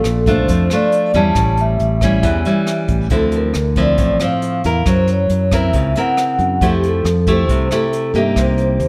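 A straight 4/4 bossa nova groove at 137 BPM in F major sets a sunny, sophisticated mood in this short excerpt, cut from a longer piece. A jazz brush drum kit keeps time on hi-hat, rim click and a boomy kick, its brushes heard in a studio room, while a bright, punchy fingered electric bass joins at 0.1 seconds, sitting low between A1 and G2. Up front, a fingerpicked nylon-string guitar with fresh strings gives a warm classical accompaniment, complete with audible finger squeak. The melody falls to a vibraphone played with soft mallets, its metallic, ringing tone mellow, warm, dark and smooth, with a medium motor vibrato. The harmony moves through rich jazz colours, from Bbmaj7 and A7 to Dm9, Gb7#11 and Fmaj9 before landing on Cm7, all wrapped in light reverb.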